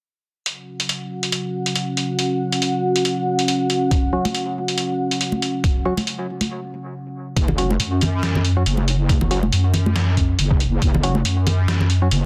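A heavy, saturated square-and-sine wobble bass pushes up front from 7.4 s in this brooding, half-time deep dubstep at 139 BPM with a swung 16th feel, arriving after a short break at 6.5 s and following a moody, detuned sawtooth pad with a sub octave that holds an F#5 chord; meanwhile a muffled, pitched-down sampler-style trip hop kit of hi-hat and medium-tuned snare sits forward, a compressed, thumpy electronic kick joins at 3.9 s, hollow organ-like stabs and bright, damped congas carry dub echo, and a moderate spring reverb and a dense, heavily limited master give the cut its weight.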